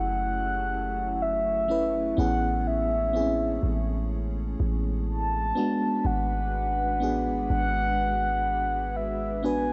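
Swung sixteenths at a slow 62 BPM in 4/4 carry this moody, longing contemporary R&B excerpt, where a round, horn-like synth lead with vibrato sings up front over a lush, tremolo-washed FM electric piano, an ethereal glassy pad and a deep, boomy 808-style bass, moving through F#m7, Amaj7 and G#m7b5 in a dry, gritty digital ambience.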